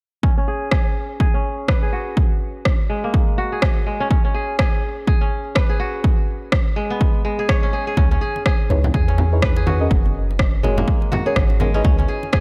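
A crisp, fingerpicked kora plays filtered, pumping arpeggios with digital delay throughout this spiritual, warm afro house excerpt in C# dorian at 124 BPM, over a punchy, overdriven electronic kick and an overdriven rim click, joined at 8.0 seconds by a deep, boomy 808-style bass and ringing low-tuned congas, with a soft, dark chord stab with chorus and phaser entering at 8.7 seconds, all in a dry mix.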